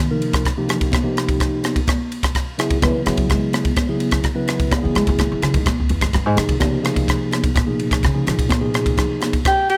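Lightly reverberant and polished, this nocturnal, driving stretch of electric jazz fusion, cut from a longer piece, opens on a woody, thumpy pizzicato upright bass solo on gut strings, set over a mellow tine electric piano through a phaser as the harmony moves from F9sus4 to Gb9sus4 and Eb13sus4. A crisp, up-front drum kit with punchy kick, dark ride cymbal and rim clicks propels it, while bright, high-tuned congas played with hard hands sit distant in the background. At 9.5 seconds a roomy soprano saxophone with vibrato enters prominently for the closing moments.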